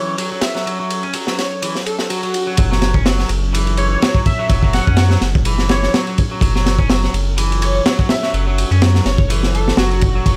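A crunchy breakbeat kit of punchy kick, high-tuned snare and dark ride cymbal drives this energetic, gritty breaks excerpt at 125 BPM with a light 16th-note swing, its saturated, rolled-off sound sitting up front in a small room from 0.2 s. Over a lone F# minor chord, a twangy, slightly broken-up picked electric guitar riff with overdrive and tape echo mingles with a warbling, nostalgic lo-fi pad that pumps in the background, while an airy, dreamy lead sings a bright, detuned melody colored by chorus, vibrato, telephone filtering, cassette grit and tape echo. At the drop at 2.6 s, a deep, thick saturated sub bass arrives up front and anchors the groove.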